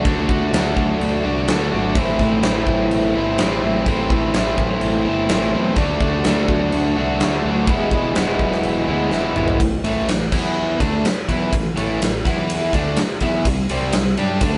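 A 4/4 groove at 126 BPM with a straight feel anchors this short, gritty and brooding classic rock clip, cut from a longer piece and tuned slightly flat at A4 = 439 Hz. A huge arena drum kit sits up front with a fat snare, punchy kick, bright cymbals and a hall-like acoustic character, working across crash, ride and toms. Beside it, a cranked, double-tracked stack guitar plays an overdriven, picked riff, also up front and bright, while a growling fingered bass adds its own overdriven, amped edge down low. The opening moves through D, Am and E in A dorian, then a drum fill from 9.1 to 9.6 seconds leads the band into A minor, where the harmony moves through power chords on A5, E5 and finally C5. The whole take has the sound of a band playing live together in one room, with moderate studio reverb and a dark top end.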